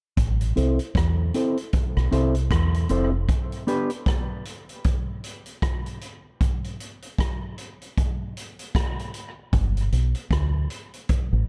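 Foam-muted, round electric bass and a vintage acoustic drum kit open this spacious, deep dub reggae excerpt together at 0.2 seconds. They settle into a slow 77 BPM groove in A minor with swung sixteenths. The kit sits up front with a punchy kick, hi-hat and rim click, its natural studio-room sound rolled off at the top. At 0.6 seconds a clean, fingered electric guitar joins as accompaniment, dark in tone and shaped by high-pass and low-pass filtering and a dub echo. The harmony moves from Am to G, and at 3.3 seconds a break begins: the bass drops out, the guitar lingers until 3.9 seconds, and the drums carry on, the harmony falling away entirely at 6.4 seconds. The bass returns over G near the close. A dark, warm production and studio reverb give the whole passage a deep, roomy weight.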